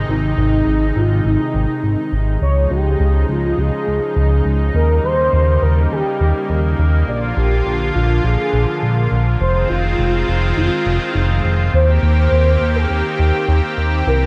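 The chorused synth bass stands out most, sitting up front with a dark, glossy tone built from pulse and sawtooth waves, its pulse-width modulation, filter sweep and moving notch giving it an evolving, retro character warmed by tube saturation. This is a nocturnal, driving synthwave excerpt in 4/4 at 103 BPM with a straight feel, cut from a longer piece and running about 14.3 seconds. A lush unison pad holds sustained chords throughout, its detuned sawtooth and square layers with a touch of noise sounding thick, airy and bright under chorus. From 0.1 s an expressive synth lead carries the melody, its smooth, sawtooth tone shaded by vibrato, a moving notch, ensemble chorus and delay. The harmony moves from Ab through Dbadd9, Eb7, Bb and Fm7 before settling on Eb6 at 11.7 s, and a moderate digital hall reverb frames the bright, 1980s-style production.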